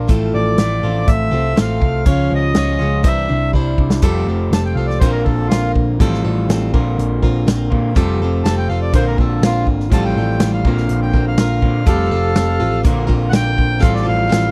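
Folk rock with a heartland rock streak, this 14.5-second slice from a longer piece moves at 122 BPM in a straight 4/4 in F major, carrying a jangly, open-road mood. A natural country drum kit sits up front with a punchy kick, medium-tuned snare and hi-hat, and leads into the turn at 4.0 seconds with a short fill. Up front beside the drums, a round, hollow-body short-scale electric bass adds a dark, amped bottom, while a boxy, picked acoustic guitar in a swing style picks out accompaniment and a slightly broken-up electric guitar through a small old amp plays a fingered riff. A reedy, smooth accordion carries the melody and stretches into a solo from 4.0 seconds onward as the chords cycle between Fadd9 and Bbadd9. At 11.9 seconds a soft, flute-like tonewheel organ slips in very quietly underneath with sustained chords, chorus vibrato and key click. The sound is dry and close, in the manner of a 1970s studio, with little reverb.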